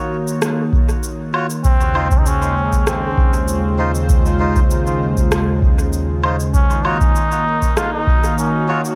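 A trombone with a straight mute carries the melody in this short ambient dub excerpt, its brilliant, nasal tone colored by light vibrato and a classical style, with dub echo trailing its phrases from 1.6 seconds. Beneath it, a smooth, detuned sawtooth pad with a soft attack and long release holds sustained chords from the start, sitting up front and thickened by chorus. The harmony moves from Ebm7 to Dbmaj7/Eb and back to Ebm7 at 98 BPM in straight 4/4, with tuning set to A4 = 441 Hz. A dry, deep analog kick drum sets the pulse, while an overdriven electronic shaker, rim click and woodblock, re-recorded in a large room and soaked in dub echo, add texture. A reedy, breathy melodica with a dark plastic-case character plays stabs through its own dub echo, and light reverb gives the piece a hazy, deep mood.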